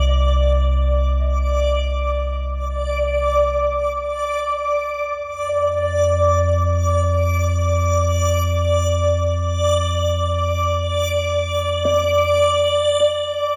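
Reflective and spacious, this ambient excerpt sets an ominous, rumbling drone bass with a phaser and a dreamy reversed, granular swelling texture at the front, while a delicate, bell-like celesta with dub echo sits in the background until 4.6 s and returns at 11.9 s, as the harmony moves from Cm to Dm/F in a wet echo chamber.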